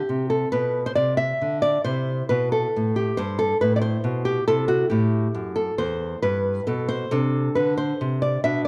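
A dark production set in a moderate recital-hall reverb frames this serene, dance-like baroque-style classical excerpt, where a single up-front nylon-string guitar with a small, fresh-stringed tone and audible finger squeak is fingerpicked in a rubato 12/8 at about 91 BPM, moving through C and A minor harmonies.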